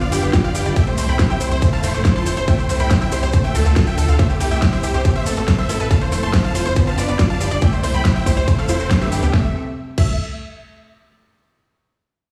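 A punchy, overdriven electronic kick sits up front, entering at 0.3 seconds to drive this euphoric, uplifting trance drop in C major at 140 BPM in a straight 4/4. A tight, driving sequencer bass, built from sawtooth, square and sine waves with a wave-folded, filter-plucked edge, pumps against the kick in the low register. Huge, lush supersaw chords carry the melody between G4 and C6 with a bright, detuned sheen, sidechain pumping and digital delay, shadowed by a very quiet, warbling vintage analog pluck playing a second line with chorus. Beneath them, a ring-modulated unison pluck spins delayed arpeggios in the background, while a rich symphonic string section holds bowed, vibrato-laden chords until 9.5 seconds. A big-room dance kit adds a huge snare, metallic hats, ride and crash from behind, a grainy, mellow cabasa rustles until 9.3 seconds, and the harmony cycles through G7, C6, Fmaj7, Dm and Amadd9 before a band accent on Gadd9 at 8.9 seconds resolves to C6. 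This cut from a longer piece has light reverb and a large studio reverb, like a big sound system filling a bare room.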